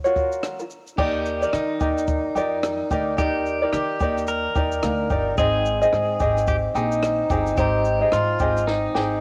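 A home cassette recording with light reverb and a small-room ambience, this heartfelt, easy-going acoustic pop excerpt moves with a gentle swing in 4/4 over major seventh chords. A light, fingerpicked tenor ukulele sits up front beside a compact cocktail drum kit whose dry, tape-colored sound pairs dark cymbals with a high-tuned snare and punchy kick. At 1.0 seconds a woody, growly pizzicato upright bass, a bright, twangy pedal steel guitar with slide and volume swells, and a very quiet, reedy electric piano with fast tremolo enter, and a drum fill at 8.7 seconds closes the cut.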